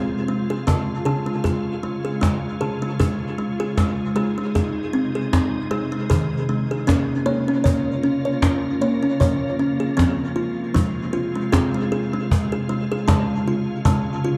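Meditative and hypnotic, this excerpt of world-style tuned-percussion music rides a lightly swung feel as a woody, hollow-toned kalimba spins short thumb-plucked arpeggios through a diffuse ambient delay, beside a snappy acoustic cajon with snares. With them, a pure, full-bodied organ-like pad holds calm sustained chords with a slow attack, long release, detuned unison, ensemble chorus and its own reverb, and all three parts sit up front. A dark, warm production bathes the mix in a concert hall reverb alongside a small room reverb, and the music shifts into a new section at 10.0 s as the harmony returns to F minor.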